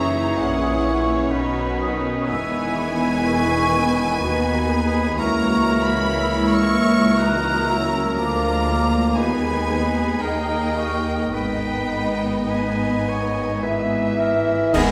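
This is a slow, melancholic and yearning romantic movement for symphony orchestra in 3/4, moving with a free, rubato pulse, and it is taken from a longer piece. From the opening, a rich violin section carries the melody with smooth vibrato, supported by a second violin line, an airy, hollow flute section and a clear oboe with a faintly vintage colour. Beneath them a focused viola section and a mellow solo bassoon fill in the accompaniment, a very quiet French horn section holds sustained chords, and intense cellos and lush double basses anchor the bass. The harmony wanders through yearning, chromatic turns before settling back on the home minor chord near 11.3 seconds, just as bright, dry cymbals, a cymbal swell and concert bass drum enter at 11.4 seconds. At 14.7 seconds the passage closes on a sudden accent, where a tight trombone section and a single trumpet stab join in, all set in the resonant reverb of a concert hall.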